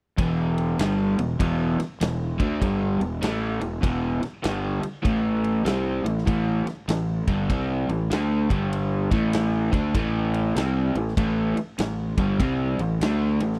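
A crunchy, double-tracked overdriven guitar riff sits up front, entering at 0.2 s together with a growly, fuzz-drenched fingered bass and a big, punchy acoustic rock kit with bright ride cymbal and a medium-tuned snare. This smoky, brooding blues rock and southern rock cut, taken from a longer piece, swings at 98 BPM in E minor, moving from Em to A5, G5 and back to A5. The sound is dry and close in a 1970s studio style, with the guitar bright and picked over the bass's fuzzy growl.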